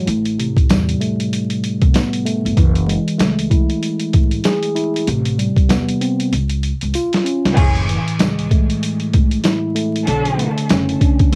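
Dry, homespun cassette sound with vinyl crackle frames this short, reflective and gritty boom-bap hip-hop cut, swinging at 96 BPM in 4/4 and tuned slightly flat to A4 = 435 Hz. A mellow, clean tine electric piano sits up front with filtering and tape coloring, moving through Am9 and F#m9 chords, while a woody pizzicato upright bass with saturation holds down the low end. The sampler-style drum kit is compressed and pitched down, with a thumpy kick, medium-tuned snare, hi-hat and crash, and a faint jingly tambourine sits close in the background. A drum fill at 6.3 s over a C# chord leads into an F# minor passage at 7.6 s, where a lush, distant bowed string section with vibrato adds echoing stabs as the piece moves to Bm9.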